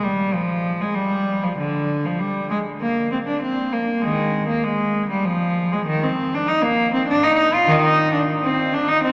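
Serene and dance-like, this brief passage from a baroque-style suite movement for unaccompanied cello moves in a flexible, rubato 3/4 at 99 BPM in Eb major. A single bowed cello, up front throughout the 9.1 seconds, sings from D3 to F4 with a reedy gut-string tone, light vibrato and period style. The cello sits inside a wet cathedral reverb with a 6.2-second decay that lets each note hang in the air.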